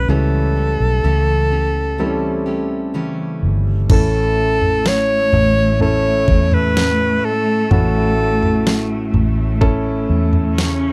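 A clear, up-front alto saxophone carries the melody from the opening of this tender, emotional pop ballad excerpt, its jazz-style vibrato set over a concert grand piano with deep bass, a woody, full-bodied fingerpicked jumbo steel-string guitar with old strings, and a dark, round, foam-muted electric bass. The tempo is a slow 63 BPM in straight 4/4, tuned to A4 = 438 Hz, and the harmony rests on A7 before settling on A at 3.9 s. At that moment a bowed studio cello section enters with an intense second line, its smooth top shaded by vibrato and a slapback echo. An electronic, produced R&B drum kit arrives at the same time, bringing a knocking kick, a deep snare, toms and crash cymbal, while the guitar stops at 4.4 s. The saxophone ends its phrase at 9.1 s as the piano, punchy bass and cellos carry on. The sound is dry and close, like a 1970s studio recording, with little reverb.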